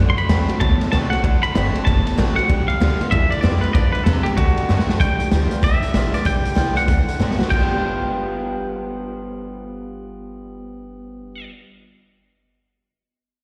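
A raw garage drum kit sits up front with a gritty, saturated sound, a punchy kick and a medium-tuned snare, driving this rollicking, rowdy rockabilly cut at a swung 191 BPM in 4/4. The kit throws in fills at 4.7 and 7.2 seconds, then drops out at 7.6 seconds, leaving the strings to carry on. Above it, a twangy, clean electric guitar plays the melody, soaked in spring reverb, slapback and tape echo. A woody, thumpy upright bass with gut strings underpins the harmony, which swings between D7 and G7 in G mixolydian. A boxy acoustic guitar picks a swing-style accompaniment with slapback echo, while a lo-fi, slightly broken-up electric guitar plays a riff further back in the mix, coloured by ensemble chorus and slapback echo. The whole excerpt sounds like a live gig heard through the venue's PA, with small-room ambience and a hall-like reverb.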